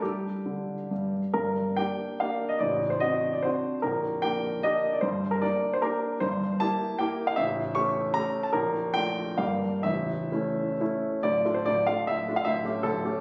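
A capricious, nostalgic romantic classical triple-time dance in 3/4 for solo baby grand piano, this short excerpt moves with flexible rubato between 120 and 164 BPM on dotted rhythms, shifting from G minor to D minor at 6.2 s, its polished, up-front piano tone set in the wet reverb of a recital hall and captured on a phone with compression and lossy artefacts.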